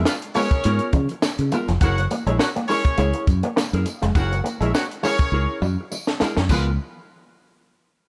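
Gritty and strutting, this funk excerpt at 102 BPM with a light 16th-note swing rides on a compact cocktail drum kit with a punchy kick and high-tuned snare and an up-front fingered electric bass, while a twangy, scooped envelope-filtered electric guitar with subtle chorus plays the riff from 0.3 seconds, a dark, clean mellow electric guitar comps, a tight horn section in octave doubling carries a second line over Db6 and Gb9 chords, a jingly vintage tambourine sits in the background, and a drum fill from 5.3 to 6.5 seconds leads into a brief new section under light reverb.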